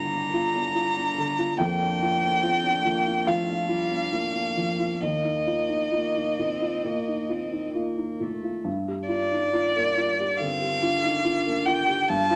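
Uneven beats and a free rubato pulse shape this reflective, longing neoclassical piece for piano and strings, moving at about 69 BPM in 4/4 in G minor and tuned to A4 = 436 Hz. A single violin carries the melody between D5 and Bb5, played sul tasto with an airy bow, soft attack and light vibrato, and it sits close and up front with a rich, intimate tone. Beneath it, a lone cello plays a quieter second line from G3 to F4, also sul tasto, its pure, floating sound placed distant in the mix. A dark upright piano provides the accompaniment across a broad range from Eb2 to Bb5, its woody, mellow, slightly detuned character and vintage feel coming with audible action noise and long sustain. The harmony moves from Gm7 through Bb6/F and Ebsus2, and the opening passage returns at 8.7 s on Gm7, all within a moderate studio reverb, in a short section cut from a longer piece.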